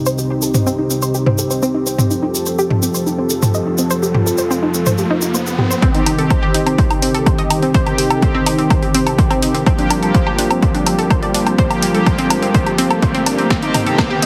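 Heavily compressed and high-pass filtered like a radio broadcast, with light digital ambience, this cinematic, driving melodic techno excerpt at 125 BPM in C dorian opens with a moody, detuned dark analog pad carrying sustained chords with 12-bit sampler grit and sidechain pumping, a round, bright analog pluck spinning dub-echoed arpeggios, a grainy cabasa and a dry, overdriven analog drum machine of hi-hat, punchy snare, toms and woodblock; a very quiet riser creeps in at 3.3 seconds, and at 5.8 seconds the cabasa drops away as a bold, brassy pad with tremolo stabs and an up-front, overdriven kick re-recorded in a large room push a build-up over Cm and Gm7 toward a drum fill at 13.5 seconds.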